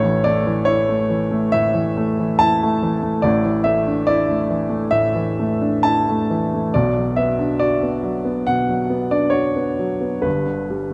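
A baby grand piano, natural and up front with a short sustain, carries this peaceful, tender fragment of neoclassical minimalist music on its own, moving in a rubato 4/4 at roughly 64-72 BPM in D major. Spanning G1 to A5, its harmony passes from A through Dsus2/A and Bm to G, arriving there at 10.2 seconds, all set in a moderate, lush hall reverb. The rough home-demo mix has a rolled-off top, with nothing above 10.6 kHz.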